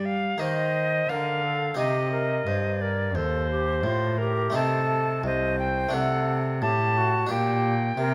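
A baroque-style sonata movement with continuo, this short passage cut from a longer piece has a solemn, flowing mood in a straight 4/4. The mellow alto recorder carries the melody up front, its pure wooden tone shaped by vibrato, a soft attack and rolled-off highs, giving the line an expressive, singing quality. From 0.4 seconds a bright baroque flute adds a second line beneath it, airy and crisp with a straight tone and lifted highs that contrast with the recorder's softer voice. The cello anchors the bass with a single bowed player's nasal, reedy gut-string sound in period style, while a plucked harpsichord with one set of strings fills in the accompaniment with a sparkling Italian-style timbre, sitting lower in the mix. Close, detailed microphones and light reverb keep the ensemble intimate as the harmony moves through minor and diminished colours toward a closing G minor chord.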